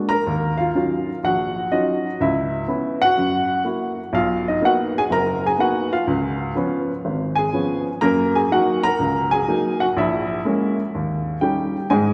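A church's long, wet reverb, lingering about 3.3 seconds, surrounds a woody upright piano that still sits up front in the sound. This is a short cut from a longer solo jazz piece in E-flat minor, moving at 124 BPM in 4/4 with a swung eighth-note feel and a smoky, cool mood. The piano carries everything alone for the full 12.1 seconds, ranging from a low F#1 up to Bb5. An opening passage moves through Ebm9, Dbm7 and Gb7, and at 4.1 seconds a second section shifts to Bmaj7, then Db7 and Gb6. It closes on Bbm7b5 and Eb7.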